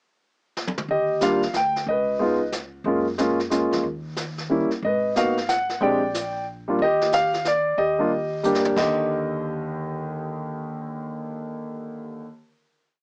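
Playful and warm, this short jazz piano trio piece in a swinging three opens with a brushed drum fill at 0.6 seconds, then sets an up-front grand piano, colored by cassette tape, playing motif-based call phrases and syncopated rootless comping over a woody pizzicato upright bass in a two-feel and a vintage kit with brush sweeps on the snare and a rolled-off top, all caught in a moderate booth ambience on a home cassette with a small-speaker sound before settling onto a final chord at 8.8 seconds.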